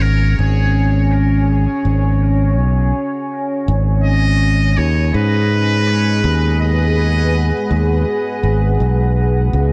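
A bright, punchy fingered electric bass sits up front, direct and touched with tube saturation, anchoring this spacious, deep stretch of ambient dub at 82 BPM in 4/4 with a swung sixteenth feel in G# minor. Behind it, a dark sawtooth pad spreads slow-attack, detuned unison chords from G#3 to G#5, thickened by chorus and its own reverb, moving from C#sus4 to G#m7 at 3.7 seconds. A muted trumpet carries a thin, buzzy melody between G#4 and D#5 in a classical style, with light vibrato and a soft attack, its sound distant and roomy under gritty 12-bit sampler colour and dub echo. The trumpet falls away at 8.0 seconds while bass and pad carry on to the close at 9.7 seconds. A small room ambience with light reverb frames this moody fragment of a longer piece.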